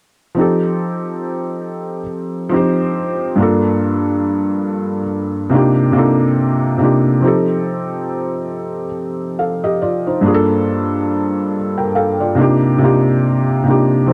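A dark, hazy production with a modest small-room reverb frames this melancholic hip hop fragment, cut from a longer piece. A felt-muted upright piano plays alone from 0.4 to 14.1 s, up front and intimate, its soft, mellow tone shaded by cassette tape colour and a low-pass filter, with the noise of its action plainly audible. Over a swung sixteenth-note feel in 4/4, it moves through F9, Gm7 and Cm11 twice, spanning G2 to G5.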